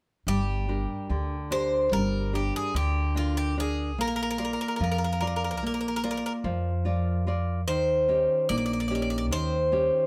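At 0.3 seconds a Greek folk bouzouki band opens together in a reflective, melancholic mood, moving in 9/8 with a straight feel. The bouzouki carries the melody up front, its bright, metallic tone coming from picked double strings, some of them octave-doubled, and a plate reverb adds sheen to its line. Beside it, also up front, the nylon-string guitar fingerpicks a full-bodied, deep classical accompaniment with a dark colour. Underneath, the upright bass plays pizzicato on steel strings, giving a woody, thumpy low end before it stops at 9.9 seconds. The harmony moves from Gm to Bb and then to Eb7 beneath a light reverb, and the bouzouki and guitar ring on until 10.1 seconds, where this piece, cut from a longer performance, ends.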